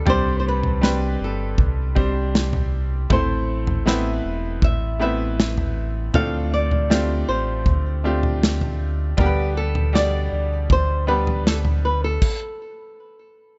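A small-room recording with a softened top end carries this heartbroken, longing pop ballad at 79 BPM in straight 4/4. A dark, fingerpicked flamenco guitar sings the melody over a brilliant, polished grand piano, a deep sine sub bass with an added octave, and a punchy, up-front acoustic drum kit with a medium-tuned snare, toms and crash. The chords move through Csus2, Amadd9, Dm7 and G/D before the piano and bass stop at 12.2 seconds and the drums fall away at 12.4, leaving the guitar to carry on alone until 13.6 seconds.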